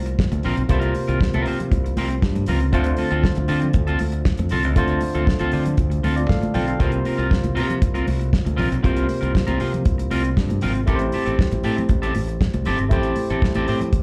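Disco groove with a driving, sultry mood, led by a damped 70s drum kit with a fat snare, tight kick and rolled-off top sitting up front, a bright, punchy fingered electric bass, a barky tine electric piano through a combo amp and a clean picked electric guitar comping over C7sus4, Dm7 and Am7 chords, while soft-handed, thin-skinned congas sit in the background, all heard as a live gig through the venue's PA with light club reverb, in a short clip cut from a longer piece.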